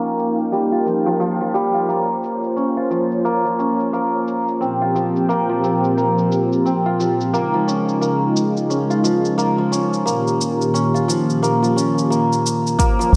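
Awash in wet echo-chamber reverb, this mystical, hypnotic organic downtempo fragment at 88 BPM, with a 16th-note swing, sets shimmering hammered santur arpeggios, shaped by delay and a filter sweep, over a smooth, detuned sawtooth pad with chorus and sidechain pumping, moving through Eb, Bbm, Fsus2/Bb and Dbadd9 chords, while metallic, tape-warm electronic shaker and hi-hat sit low in the mix, a deep electronic kick arrives at 12.8 s and a round, dark analog bass lands on Bb1 at 13.1 s.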